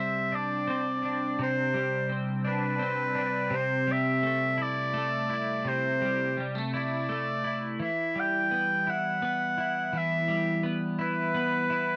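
A clear, classical-style oboe and a bright, picked twelve-string electric guitar begin together in this melancholic, dramatic pop excerpt, moving in an unhurried 6/8 at 56 dotted-quarter beats per minute in E minor. The oboe carries the solo melody between B4 and G5, its tone both roomy and slightly distant yet still sitting up front. Beneath it, the double-tracked guitar supplies twangy, compressed accompaniment from C3 to E4, its clean chime also placed close to the listener. The harmony moves from Csus2 to Am7/C at 3.5 seconds and settles on Em at 7.8 seconds, with both parts playing throughout the 12 seconds. A light reverb touches the otherwise dry, intimate 1970s-style studio sound.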